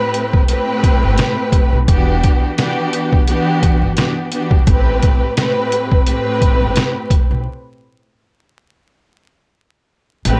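Boom-bap hip-hop excerpt in A minor at 86 BPM with a moody, gritty swing, where a lush, bowed string section with soft-attack vibrato sits up front through a cassette-tape haze, a compressed, pitched-down sampler-style drum kit lays down a thumpy kick and medium-tuned snare, and a woody, dark pizzicato upright bass enters at 1.0 s, moving from Am9 to Em9 and back to Am9 before a break at 7.5 s, all under light reverb and vinyl crackle.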